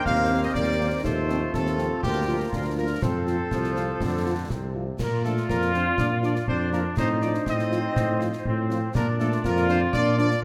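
A scoring-stage reverb gives this short excerpt from a longer military-style march for wind band a moderate sense of space, with a proud, festive mood at 121 BPM in 2/4 and Bb major. A dark, smooth-topped trumpet section carries the melody, while a mellow euphonium with vibrato and a distant, roomy woodwind section play second lines in the background. A clear trombone section with light vibrato and a vintage edge holds sustained chords, and a very quiet, tight French horn section adds accompaniment from 0.3 seconds. Up front, a mellow tuba with a soft attack anchors the bass from 0.1 seconds, entering together with concert snare drum, concert bass drum and clash cymbals, the cymbals dark and the kit close and dry. The harmony moves through Cm7/Eb, F7/Eb and Bb/D toward F, then settles between Bb and F7/A in the second half from 5.0 seconds.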